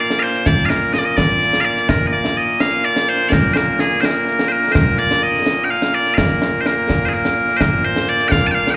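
Ceremonial and stirring, this short cut from a longer piece of Scottish traditional pipe music moves at 84 BPM in a straight 6/8, counted in dotted quarters, in Bb major. Loud, piercing bagpipes carry the melody from the first moment, a continuous solo line sitting up front and spanning Bb2 to A5. Concert snare drum and concert bass drum join at 0.1 s, acoustic and close in a small-room sound, with bright cymbals at the top. Both parts carry a slapback echo, and the whole performance is heard as a live gig through the venue's PA, with light reverb, small-room ambience and the reverb of a recital hall around it. The opening passage holds until 7.6 s, when a new section begins and runs briefly to the close at 8.8 s.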